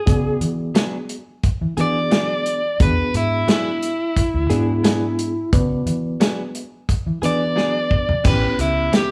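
Gritty and soulful, this short straight-eighth soul blues excerpt has a crunchy overdriven guitar carrying the melody up front over a reedy electric piano with fast tremolo, a round, foam-muted fingered bass, and a dry, muffled soul drum kit with dark cymbals and a tight kick. A bright, compressed clean guitar recorded direct adds stabs from 0.7 seconds, and the band sounds like it is playing live together in one large studio room with moderate reverb. A drum fill at 7.6 seconds leads the harmony from E9 to A9 at 8.2 seconds.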